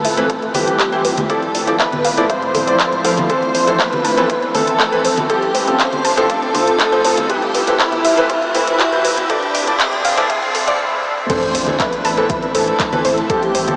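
A straight 4/4 progressive house groove at 120 BPM in A minor, with a bright-hatted house drum kit, a very quiet overdriven kick and compressed cowbell and congas in the background, carries this expansive, dreamy excerpt through a build-up with filter sweeps on a soft, round pluck arpeggio and a shimmering, ethereal pad. A thick, warbling, nasal unison lead carries the melody over a very quiet airy second lead, while clear grand piano stabs and a faint riser and sub drop lead to a break at 10.8 seconds, a drum fill, and the drop at 11.3 seconds, shortly after which a deep, round analog bass enters. Sidechain pumping on several parts breathes beneath a mix soaked in huge ambient reverb, with a small-speaker sound.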